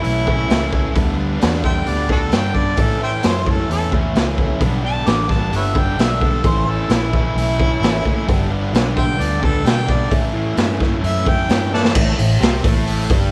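A straight 4/4 groove at 131 BPM drives this swaggering blues rock and southern rock power-trio excerpt in A mixolydian, with a raw garage drum kit sitting up front, its punchy kick, dark cymbals and saturated, rolled-off sound pumping in a small room. A fuzz guitar riff, double-tracked and compressed, and a round, foam-muted vintage electric bass rock between A and G, while an overdriven harmonica carries the melody from a distance, roomy with light vibrato and tongue slaps, until 11.9 seconds. A drum fill at 11.7 seconds leads into a brief closing passage on an A5 chord.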